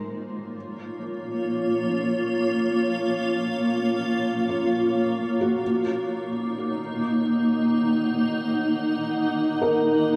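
A granular cloud pad sits up front from the opening second, holding sustained chords on F#maj7 in a cloudy, blurred haze of detuned sine tones that slowly evolve with a slow attack and long release. This ambient passage floats in free time with a weightless mood, the pad's full-bodied swirl carried by its own built-in reverb and a shimmer reverb. At 4.5 seconds a felt-muted upright piano enters, softer than the pad, playing gentle arpeggios in a narrow middle register. Its thick felt gives a mellow, dark, intimate tone, with audible action noise, and its notes trail into delay and shimmer reverb. The whole recording is bathed in a lush, wet hall reverb with a 2.7-second decay, and it runs until 10.2 seconds as a fragment cut from a longer piece.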